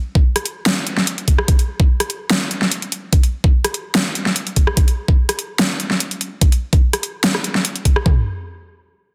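A dense, heavily limited modern master with light reverb and digital ambience frames this aggressive, menacing heavy wobble dubstep fragment in a half-time 4/4 feel. An electronic, layered dubstep drum kit carries a knocking kick and toms, overdriven and up front, from 0.2 to 8.2 seconds. A second layered kit of hi-hat, rim click and a huge overdriven snare sits just as far forward, with the final second giving way to a short new section.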